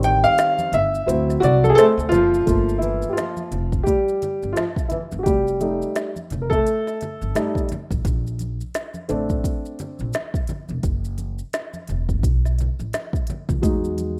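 Nocturnal and cool, this jazz-hop excerpt moves at 86 BPM in G dorian with a loose 16th-note swing. It opens with a short break where the up-front upright piano solos over Am7b5 and D7, then continues its woody solo through Gm7, F7 and Bbmaj9 from 2.5 s, over a thumpy pizzicato upright bass on gut strings, an organic electronic drum kit with a deep kick, crisp hats and a tape-tinged character, and low, ringing congas and maracas played with soft hands. Moderate plate reverb and small room ambience give it the feel of a rough home demo.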